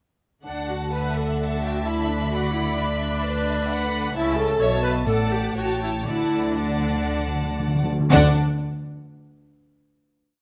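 In a rubato 4/4 at 116-132 BPM, this brief, graceful and lively classical-period movement for symphony orchestra in D major has a clear, distant chamber violin section carrying the melody over a second violin line, a rich viola section and a smooth, even cello section in the background with sustained bass and passing notes, doubled by an up-front double bass section, all bowed with vibrato in a wet recital hall, slowing from 3.2 seconds as round, close and dry soft-mallet timpani enter at 5.1 seconds with single strokes and a fill before the final chord at 8.1 seconds.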